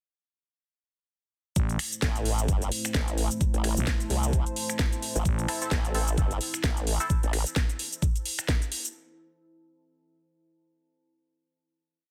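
A four-on-the-floor electronic kick drives this gritty, bouncy bass house piece at 130 BPM in A minor, with a garage drum kit of cracking snare, metallic hats, shaker and finger snaps swinging on the 16ths, both kicking in at 1.6 seconds with a tape-tinged, up-front punch. A thick, growling FM bass with tube saturation chops out phrases beside a detuned sawtooth wobble bass that moves through a formant filter with overdrive and chorus, while a nasal, band-passed chord stab with ring modulation, phaser and dub echo pops in syncopated bursts from 5.5 seconds. Behind them, a moody, wave-folded analog pad and a warbling, mellow ambient pad with built-in reverb hold dark chords, with the basses, pads and stab all pumping against the kick in a dense, heavily limited, dry mix.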